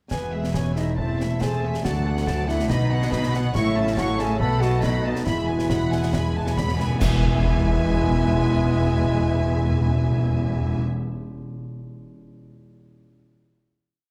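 Set in a moderate recital-hall reverb, this short, complete heroic adventure cue sounds adventurous and soaring. Lush, vibrato-rich violins carry the melody, while a second violin section, an airy wooden flute doubling the tune at the octave, and a dark, very quiet clarinet add second lines. Beneath them sit rocking viola figures, sustained chords from mellow, distant French horns and bright trombones, sweeping harp arpeggios, and a bass line of rich cellos and woody double basses. A marching snare over a bass drum on the beat drives the theme, with cymbal swells and crashes arriving at 3.5 seconds. Dry, articulate timpani roll a fill from 5.3 seconds into a full-band accent at 7.0 seconds and a held final chord.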